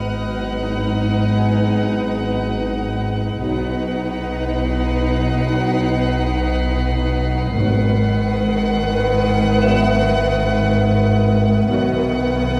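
At a slow 58 BPM in a straight 4/4, this uneasy, ominous suspense cue in G# minor moves between G#m7 and B. A violin section carries the melody over a second, darker violin line, while violas accompany and woody cellos and an up-front double bass section hold the low end, all bowed sul tasto, and mellow French horns sustain chords in the background. An ethereal, chorused synth pad, a metallic, ringing vibraphone and a faint high violin texture float behind, very quiet hard-mallet timpani strikes arrive at the opening and around 7.6 seconds, and the whole passage sits back in a wet recital-hall reverb.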